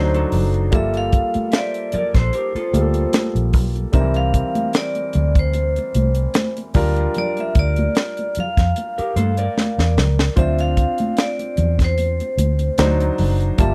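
A dark, round, foam-muted electric bass sits up front with a tight funk drum kit, its high-tuned snare and tight kick giving this smooth, cinematic stretch of lush 1970s-style soul a gently swung pocket, with a drum fill at 9.6 seconds. A ringing vibraphone struck with hard mallets carries the bright, metallic melody over a slow motor vibrato, while a clear, intimate grand piano, its action noise audible, accompanies on rich chords such as D7b9 and Gm9. A slightly broken-up, lo-fi electric guitar with subtle chorus plays a riff until 3.7 seconds and again at 9.0 seconds, and thick-skinned, high-tuned congas played with soft hands murmur in the background of this dry, close studio sound.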